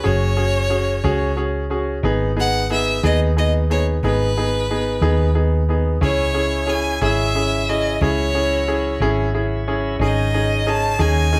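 Dramatic and melancholic, this short cut from a longer pop piece moves at 60 BPM in a straight 6/8 in C# minor, with an intense, vibrato-laden solo violin carrying the melody up front over a clear, polished concert grand piano and a round, punchy hollow-body electric bass. At 6.0 s a shouting, lightly overdriven tonewheel organ with key click and slow rotary speaker joins in the background with sustained chords, as the harmony passes from F#sus2 through G#m and C#m to a closing G#sus4. The band plays live together in a large studio with moderate reverb.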